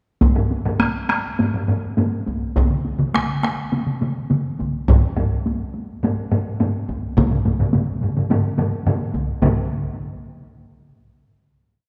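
Two taiko ensembles open together at 0.2 s: one struck with heavy sticks repeats a pattern, and the other, hit with hard sticks, plays up-front phrases with a vintage, band-limited tone. A third heavy-stick taiko group adds its own forward phrases, and at 2.7 s a fourth hard-stick ensemble joins with another repeating pattern. This is a complete, ceremonial and driving traditional Japanese taiko piece in a straight 4/4 that starts around 105 BPM and speeds up throughout, ringing in a wet concert-hall reverb before it closes on a final hit at 9.4 s.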